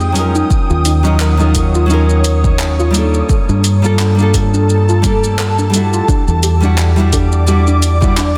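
Sunset chillout at 86 BPM in 4/4, wistful and smooth, with a 16th-note swing and a harmony that drifts through lush ninth chords from Fm9 to Ebm9, Gm9 and Em9. A deep, round fingered electric bass sits up front, dark and punchy, while a fingerpicked nylon-string guitar supplies classical-toned accompaniment trailed by tape echo. An ethereal, airy pad holds sustained chords beneath, its slow attack and long release shimmering with ensemble chorus, built-in reverb and tremolo. From 0.2 seconds a soft, full-bodied pluck traces gentle arpeggios in the background, roughened by vintage 12-bit sampler grit and tape echo. The tape-warm deep house kit of handclaps, hi-hat and shaker is joined at 0.5 seconds by a layered electronic kick, and very quiet, high-tuned bongos enter from 1.6 seconds. A moderate hall reverb frames this short cut from a longer piece, and the master is dense and heavily limited.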